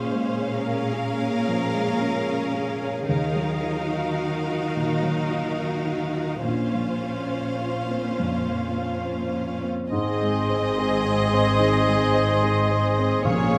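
A long-sustaining baby grand piano anchors this bittersweet, longing orchestral film cue, set in rubato over expressive portamento violins, lush violas and focused cellos in a moderate scoring-stage reverb; at 9.9 s a rich violin section takes up the melody, joined by a clear clarinet, a cor anglais in the background, a hollow flute, a very quiet horn section and bowed double basses, before hard-mallet timpani strike at 13.2 s.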